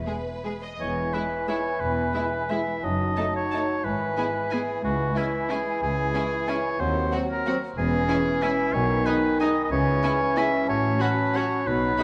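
A moderate scoring-stage reverb surrounds this cut from a longer orchestral ballroom waltz, with the oboe placed up front and the flute close-miked. From the start, a violin section carries the melody with expressive vibrato from the background, while a hollow silver concert flute traces a second line; a moment later a second, smooth and even violin section adds another second line, and lush, very quiet violas add accompaniment. At 0.8 s a mellow clarinet, a warm oboe and a soft-attacked, distant bassoon join, along with cellos bowing with portamento and focused double basses that anchor the bass. A French horn section enters at 1.1 s with very quiet sustained chords from afar. The mood is elegant and sweeping, in an uneven, rubato three, with the harmony moving from E through diminished chords to C sharp minor and closing on F sharp minor over A.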